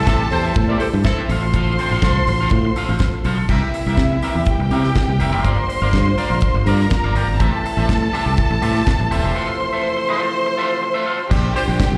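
Disco at 123 BPM in 4/4 with a driving, glamorous mood, this 12-second excerpt moves from Am7 through C7, Gm7 and Fmaj7, heard as a live gig through the venue's PA with recital hall reverb. A growly, up-front fingered electric bass and a damped 70s drum kit with a fat snare, tight kick and dark cymbals anchor a lush, bowed string section carrying the second line, while a twangy electric guitar at the edge of break-up plays accompaniment, both touched by slapback echo. A mellow French horn section holds sustained chords beneath punchy horn stabs that sound from 0.0 to 1.2 seconds and return at 11.6 seconds.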